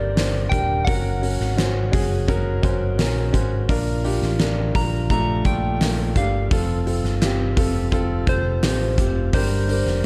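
A picked electric bass sounds from the very start, direct, amped, warm and punchy in the low register, and a big, acoustic arena drum kit enters at 0.2 s in a straight 4/4 groove, with a punchy kick, a fat snare and hi-hat sitting up front in a roomy space. This is piano-driven pop with a hopeful, uplifting mood at an unhurried pace. A dark upright piano carries the accompaniment throughout, its tone mellow, woody and natural, placed close in the mix. Over it, a soft struck synth lead sings the melody with a gentle, keys-like FM character, fast-attacking, decaying notes and a warbling vintage chorus. Underneath, a clean tonewheel organ holds very quiet sustained chords with key click and a fast rotary speaker, while the harmony moves from Gm through Gb, Bb and F before returning to Gm, all framed in a warm, dusky production with light studio reverb in this short excerpt from a longer piece.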